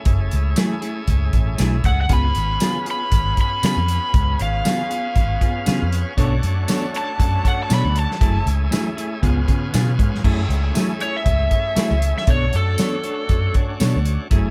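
Straight-eighth soul blues in F# minor at 118 BPM, soulful and brooding, with an overdriven slide guitar played with fingerpicks carrying the bright, up-front melody from 1.9 seconds over a shouting tonewheel organ through a slow rotary speaker, a round, foam-muted vintage bass and a warm soul drum kit with dark cymbals, tambourine and a pumping small-room sound. A clean, twangy electric guitar adds picked stabs, while a brilliant jazz-style horn section holds sustained chords in the background from 2.1 to 10.2 seconds, and the organ slips in a brief fill around 5.4 seconds. Light reverb surrounds this cut from a longer piece as the chords move between F#m9, C#7 and Bm9.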